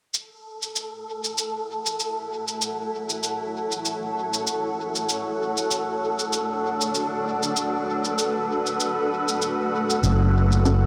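Spacious and hazy, this ambient dub excerpt fades in on a muffled, pitched-down cabasa soaked in dub echo and a breathy, wind-like noise texture, soon joined by a cloudy, evolving granular pad of sustained chords with built-in reverb, before a round, punchy fingered electric bass arrives at 10.0 seconds and a muted, phased dub chord stab flickers briefly at 10.7 seconds.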